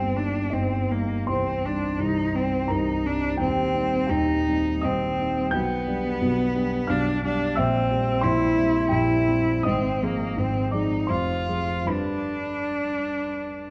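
Melancholic and elegiac, this short romantic classical duo excerpt for cello and grand piano unfolds in triple metre with a freely breathing rubato feel. The cello carries the melody throughout, a single bowed voice with a rich, focused tone and vibrato, sitting up front yet with a slightly distant quality. A dark baby grand piano accompanies it from start to finish, its mellow, smooth, vintage character spanning from the deep bass register up into the treble. The harmony moves through minor-key shades, passing from Cm through G/B and C7/Bb to Fm before settling on G at 11.9 seconds, leaving the phrase unresolved as the passage ends at 13.7 seconds. A moderate recital hall reverb and a dark production give the pair an intimate, sombre glow.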